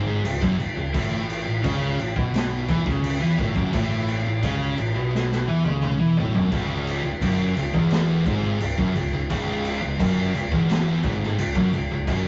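Brooding and hypnotic, this stoner and doom metal excerpt moves at 86 BPM in C# minor, with two thick fuzz guitars and a double-tracked overdriven electric guitar grinding out a low riff while a round, fuzzed fingered bass sits dark beneath them. A raw garage drum kit sits up front, with a boomy kick, high-tuned snare, toms and crash, saturated and gritty with a rolled-off top, and it plays a fill from 5.1 to 6.5 seconds before the harmony settles on C#m. The whole thing has the rough, muffled sound of a rehearsal room, wrapped in a short, wet small-room reverb.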